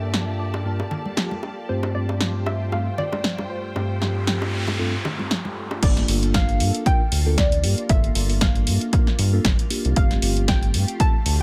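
A round, dark analog bass and a punchy, tape-warm electronic kick arrive together at the drop at 5.8 seconds, grounding this smooth, deep house excerpt at 116 BPM in G minor, with a 16th-note swing moving between Gm9 and Fadd9/G. From the start, a mellow tine electric piano plays stabs through phaser and delay, a soft round pluck carries the melody under lush chorus, and a silky string machine holds chords in the background, both piano and strings pumping with the sidechain. Veiled, muted studio strings and layered bongos and congas fill the opening half, a punchy analog drum machine with snare, hi-hat and crash runs throughout, and a noise sweep leads into the drop.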